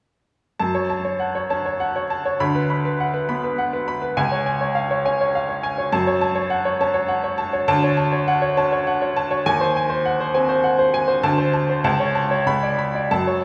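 A bright baby grand piano plays alone from 0.6 to 13.4 seconds in this agitated, passionate passage from a longer virtuoso classical piano study in F# minor, moving at 101 BPM in 3/4 with free rubato across a range from C#2 to B5, its brilliant, long-sustaining tone heard from further back in a recital hall with a wet 1.8-second reverb as the harmony travels from F#m through Bm/D, C#, Dmaj7 and G#7/D# to a closing Bmadd9/C#.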